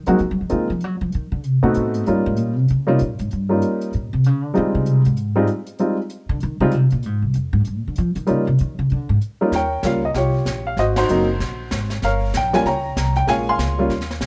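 A woody, thumpy upright bass with gut strings takes a pizzicato solo up front for the first 9.5 seconds of this swinging, sophisticated jazz piano trio clip, cut from a longer piece. An intimate baby grand piano with audible action noise and short sustain carries the melody over rich ninth, diminished and rootless dominant chords. A small-room brush kit with dark cymbals, a high-tuned snare and a boomy kick sits lower in the mix, and the band hits an accent at 10.9 seconds in light reverb.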